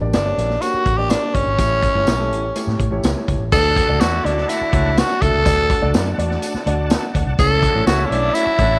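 Danceable and warm, this short cut from a longer piece is uptempo 1960s-style soul in D major at 124 BPM, in a straight 4/4. A raspy, gritty tenor saxophone carries the melody up front, its vibrato and scooped notes giving the line an edgy bite. Underneath, a dark, mellow concert grand piano with audible action noise supplies accompaniment, while a foam-muted fingered electric bass sounds round and punchy, and a vintage drum kit with dark cymbals, a medium-tuned snare and a punchy kick drives the groove alongside a jingly tambourine in the background. The harmony moves from Gm to A7 before settling on D at 3.5 seconds, where an overdriven tonewheel organ enters with thick sustained chords through a slow rotary speaker, and a distant, roomy horn section joins at 3.8 seconds with a second line. Light studio reverb frames the mix, and lossy compression artefacts colour the sound.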